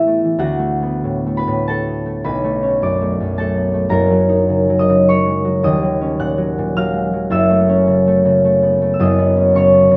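A concert harp carries this gentle, wistful classical solo, its thumb-plucked strings sounding warm and ringing as they sit up front in the mix. The piece moves in 3/4 with a rubato feel, its tempo drifting between 84 and 111 BPM, and the harp is tuned slightly high, to A4 = 441 Hz. Across a range from Eb1 up to Gb6, the harmony opens on D6 at 0.4 seconds and passes through Bm9, F#6 and Ebm11 before settling toward F#m7 and C#m11/F# at 9.0 seconds. Light reverb gives the acoustic sound a soft halo of space. This brief excerpt runs to 10.0 seconds and is cut from a longer piece.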